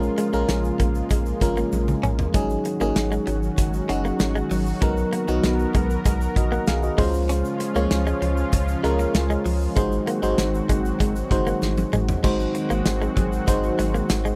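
A straight 4/4 pulse at 97 BPM drives this nostalgic, uplifting piece of 1980s-style pop, with a punchy, up-front acoustic drum kit in a pumping studio room marking time on kick, medium-tuned snare, hi-hat, tambourine, crash and toms, and dropping fills at 1.7 and 11.6 seconds. A grainy, distant tube shaker sits far back in a large room, while a round, sine-like sub bass holds down the low end with deep, sustained notes. Up front, a glassy FM electric piano with a bell-like attack, a noise layer and a vintage chorus warble carries the accompaniment over a lush, thick, detuned sawtooth pad whose bright unison chords bloom slowly and linger. A clean, compressed electric guitar, recorded direct and soaked in lush chorus, picks a warm riff in the background. The harmony moves from Bbm7 through Ab7sus4, Cbmaj7 and Dbmaj7 to Ab7, and a new section begins at 12.2 seconds before this cut from a longer piece ends under light reverb.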